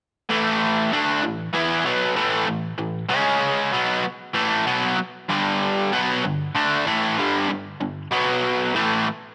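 A straight 4/4 pulse at 96 BPM drives this brief rock fragment, cut from a longer piece, in A mixolydian with tuning set at A4 = 441 Hz. A single overdriven semi-hollow electric guitar carries the whole riff from 0.3 to 9.1 s, picked and double-tracked, sitting up front with a bright, raw bite and the airy body of a hollow-body instrument. The riff ranges from G2 to E4 and moves through power chords on A5, C#5, back to A5, then G5 and B5 before the harmony falls away at 8.8 s, shortly ahead of the guitar's end at 9.1 s. The mood is swaggering and rough-edged, rooted in that mixolydian flavour. A light reverb gives the guitar some space, and the top end is capped at 10.3 kHz, keeping the sound gritty rather than glassy.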